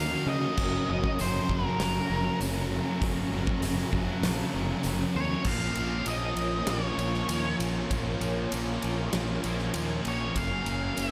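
Blissful, dreamy shoegaze and dream pop rock at 98 BPM in a straight 4/4, where a dark octave-fuzz lead guitar melody with analog delay floats over a swirling, airy phased analog pad, three picked riff guitars (a bright double-tracked cranked stack guitar, a crunchy overdriven guitar with reverse reverb and a very quiet thick fuzz guitar), a growling overdriven fingered bass, a huge arena drum kit with bright cymbals, fat snare and punchy kick entering at 0.6 seconds, and a jingly, close tambourine from 1.2 seconds, all in a light studio reverb as the chords move from Ebm and Gb to Bbm7 at 5.5 seconds and settle on Gbadd9 in this cut from a longer piece.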